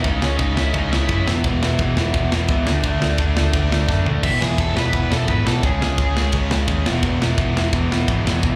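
A growly, punchy picked electric bass drives this rebellious, energetic punk rock excerpt at 172 BPM in E major, joined by an up-front metal drum kit with a tight kick and rolled-off top that plays a fill at 3.9 seconds, two bright riffing guitars (one distorted with slapback echo set in the background, the other a raw garage tone), and a dark, smooth lead guitar with overdrive, slapback echo and digital delay that carries the melody at the opening and again from 4.2 seconds, the band captured at a live gig through the club's PA.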